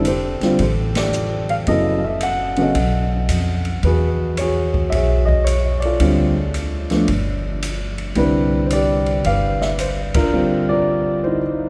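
A wet cathedral reverb with a long 6.1-second tail washes over this relaxed, warm jazz piano trio at 111 BPM in C major, swung in 4/4, where a mellow, intimate grand piano with audible action noise sits up front carrying the melody over woody pizzicato upright bass and an open acoustic drum kit with dark cymbals and a boomy kick, the band hitting accents at 0.9 and 10.1 seconds before the bass and drums drop away and the piano rings on alone until 11.7 seconds in this piece cut from a longer performance.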